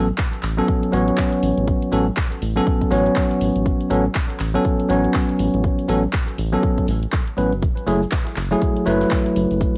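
Deep house at 121 BPM in A major with a 16th-note swing, sunny and soulful, built on bell-like tine electric piano stabs carrying vintage 12-bit sampler grit, sidechain pumping, a low-pass filter, cassette tape and analog delay over a round, deep analog bass with a sawtooth and sine edge touched by ring modulation. A punchy, tape-warm electronic kick sits up front beside a soft house kit of cabasa, handclaps and hi-hat, and at 7.6 s a very quiet, gritty, pitched-up shaker and snare enter as the harmony moves from A69 to F#m9. The whole excerpt has the feel of a home cassette recording in a modest studio reverb, cut from a longer piece.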